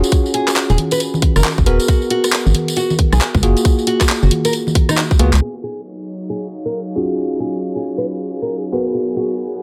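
A worn, slightly out-of-tune tine electric piano plays stabs through a combo amp in this soulful, skippy two-step UK garage excerpt, treated with delay and a filter sweep. It sits up front beside a tight, overdriven electronic kick and a layered garage kit of congas, handclaps, rim clicks, hi-hats and crash, all riding a swung 16th-note feel, with a jingly tambourine close but in the background. A fingerpicked nylon-string guitar carries a small, delayed melody. A hollow, dark, organ-like FM bass pumps against the kick. After a drum fill and a band accent, the kick and bass have dropped out by 5.4 seconds, when a bright, breathy pad with chorus and sidechain pumping enters under another filter sweep. A very quiet, ethereal pad with a slow attack and phaser adds a mellow sustained note from 6.8 seconds over rich minor and major ninth chords.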